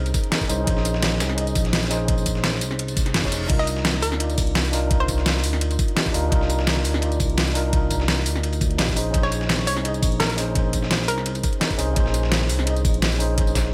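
Rolling and soulful, this liquid drum and bass excerpt at 170 BPM moves from Bbm11 to Cm11 and back, carried by a dark, up-front synth bass with ring modulation, a worn, slightly out-of-tune electric piano that is lightly overdriven through built-in speakers with digital delay, a hollow, nasal square pluck with chorus that surfaces in short melodic phrases at 3.6 and 9.2 seconds, a knocking, tape-warm electronic kick, an overdriven pop drum kit with a deep snare, crash, hi-hat and tambourine placed up front, a gritty, compressed sampler-style kit of hi-hat, ride and snare filtered in the background, and a brief reverse cymbal at 2.9 seconds, all set in a digital ambience.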